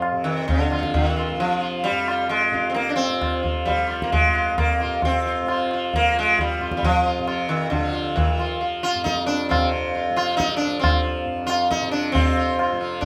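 Sitar, tanpura and tabla sound together from the very start of this short excerpt of solemn, meditative Hindustani classical music in raga kafi on F, tuned to A4 = 442 Hz. The tanpura lays down a warm, softly plucked drone that shimmers beneath everything, while the sitar carries the melody up front, its bright, round plucked tone buzzing and ringing with sympathetic strings. Low-tuned tabla with a short ring keeps time in a straight 4/4, set in a live-sounding room. The pulse starts around 134 BPM and speeds up across the 13.1 seconds, lending a gradual sense of urgency to the calm mood. A moderate studio reverb gives the ensemble a gentle sense of space.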